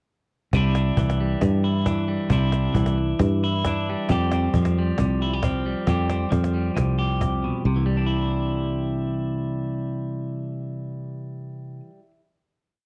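A bright, twangy clean electric guitar sits up front, picked fingerstyle with an alternating thumb and bathed in spring reverb, as this sunny highlife guitar band piece moves at 135 BPM in C major between Cadd9 and Fsus2. A round, foam-muted fingered electric bass plays a dotted figure beneath it, while a snappy, dry cajon with snares and a cassette tape colour drives the guitar band groove until 7.4 seconds. The band then settles on a final Cadd9 chord from 7.7 seconds, with the guitar ringing on to 12.2 seconds, all captured as a home recording on cassette in a lightly reverberant room.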